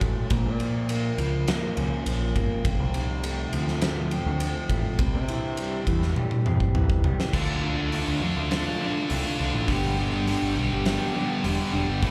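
Quiet-loud alternative rock at 102 BPM in 4/4, this brooding, angsty passage is cut from a longer piece and sounds like a live gig heard through a venue's PA, with club reverb around the band. From the start, an electric guitar through a small old amp plays twangy, lo-fi arpeggios with subtle chorus and a slightly broken-up edge. A growling, overdriven picked bass and a huge arena drum kit, with a fat snare and punchy kick up front, play throughout over chords moving from Bbm to F to C. A drum fill from 6.2 to 7.3 seconds leads into the second section, where the music settles in D dorian over Dm and G. There a scooped, high-gain guitar joins with a bright, distorted picked riff, pushed forward with slapback echo.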